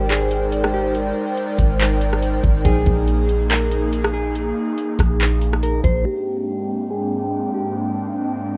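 Blissful and floating, this short atmospheric cloud-rap cut from a longer piece rides a half-time hip hop groove, with a breathy, detuned pad holding sustained Abmaj9#11 and Bb7sus4 chords through chorus and sidechain pumping while a dark, clean electric guitar carries the melody through spring reverb and digital delay until 7.7 seconds. Up front, a soft, round 808-style bass sits deep under an overdriven trap kit of knocking kick, metallic hats, handclaps and rim clicks, both dropping out around 6 seconds as a filter sweep opens the closing stretch. The rough home-demo mix sits in a digital ambience.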